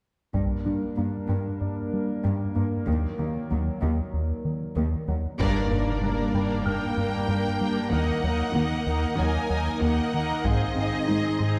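This excerpt of a hybrid orchestral and electronic film score opens at 0.3 s with a hollow, flute-like pad holding sustained chords, a glassy wavetable pluck spinning arpeggios through chorus and digital delay, a rubbery square-wave bass riff, a cello section carrying the low end in the background, and hard-stick taiko drums with a compressed, saturated edge. The mood is relentless and futuristic, moving at 95 BPM in a straight 4/4 in G phrygian, with harmony shifting between Gm and Ebm before landing on Ab. A very quiet concert grand piano adds open, long-sustaining texture from 1.6 s. At 5.4 s the full band accents as an electronic impact hits, and the strings enter: a lush violin section takes the focused melody, a second, more distant and intense violin section plays a supporting line, and violas fill in smoothly behind them. The taiko returns at 5.4 s and again at 10.4 s, while the bouncy bass stays the most prominent part. 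Everything sits in a wet scoring-stage reverb, heard from further back in the room.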